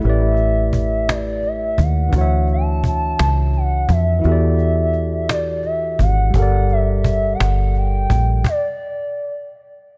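A smooth, gliding lead sits up front in this slow six-eight R&B excerpt, its mellow triangle-and-sine tone detuned and colored by chorus, phaser, vibrato and portamento as it sustains a melody between D5 and A5. The mood is sensual and intimate, moving at 57 BPM counted in dotted quarters, with a straight feel and a tuning of A4 = 435 Hz. Beneath it, a barky, clean tine electric piano played through a combo amp carries the harmony through A9sus4, Dmaj9, Em11 and Gmadd9. A deep dub bass, fingered, foam-muted and dark, gives round, punchy low notes from G1 to F2 close in the mix, while a snappy acoustic cajon with snares is struck with hard hands and captured close. Digital ambience surrounds the parts. The band stops around 8.4 seconds, and the lead lingers until 9.8 seconds.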